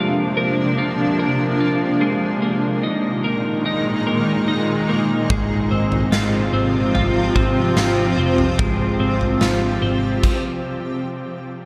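A granular cloud pad and a twelve-string electric guitar open together, the pad holding blurred, detuned sustained chords from Bbadd9 to Absus2 while the bright, twangy guitar picks arpeggios up front through analog chorus, analog delay and shimmer reverb. This is floating, ethereal dream pop at 73 BPM in a straight 4/4, cut from a longer piece. At 5.3 seconds the harmony settles on F5 as a round, foam-muted electric bass enters low alongside a huge arena drum kit, whose punchy kick, medium-tuned snare, toms and crash cymbal ring out in a big, natural room. The pad's slow attack and long release keep its cloudy, evolving texture drifting, and the whole mix is soaked in a vast ambient reverb. The pad and bass drop away at 10.2 seconds, the drums by 10.4 and the guitar by 10.8, before the cut at 11.7 seconds.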